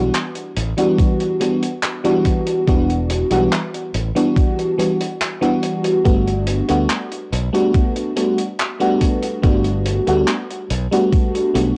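A straight 4/4 pulse at 71 BPM opens this faded, woozy vaporwave fragment in G major, cut from a longer piece, where a dark, smooth soul kit of handclaps and hi-hat sits low in the cassette-tape haze, a thumpy, sampler-style electronic kick arrives up front at 1.0 s, a bright, punchy fingered electric bass holds the low end, and a lush, warbling, detuned FM electric piano with a soft pad layer, colored by tremolo, analog chorus and tape echo, drifts from Em7 to Gmaj7 at 6.1 s, all wrapped in a modest small-room reverb with the intimate feel of a home cassette recording.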